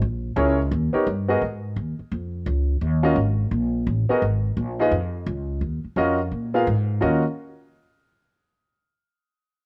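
Big band swing jazz in Eb minor at 172 BPM, this dramatic, swinging fragment of a longer piece pairs a woody, thumpy pizzicato upright bass with a clear, intimate grand piano that enters at 0.4 seconds, its audible action noise and long sustain up front, all under light reverb and the warbling pitch drift of worn old cassette tape.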